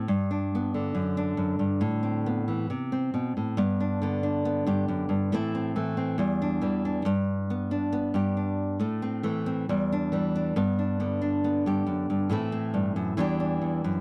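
A straight, even 4/4 pulse carries this joyful, sunny highlife passage, cut from a longer piece. A lone nylon-string guitar plays throughout, fingerpicked in a classical manner and set up front in the mix, its fresh strings giving a bright, acoustic sparkle that spans from low E2 up to G4. The opening moves through G, D/F# and Amadd9 before a new section arrives at 3.6 seconds. From there the harmony settles into a repeating cycle of G, Am and Em7. Light reverb touches the guitar within a dry, close recording that recalls a 1970s studio.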